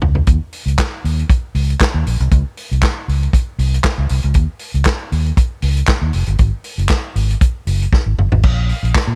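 Disco at 118 BPM in a straight 4/4, with a sultry, driving mood, cut from a longer piece. A fingered electric bass with a dark, round, amped tone sits up front, ranging from F1 to Bb2. Beside it, a tight, mid-forward soul drum kit with dark cymbals, a medium-tuned snare and rolled-off top brings kick, hi-hat, handclaps, toms and crash, with drum fills at 0.0 and 7.9 seconds, all in a dry room.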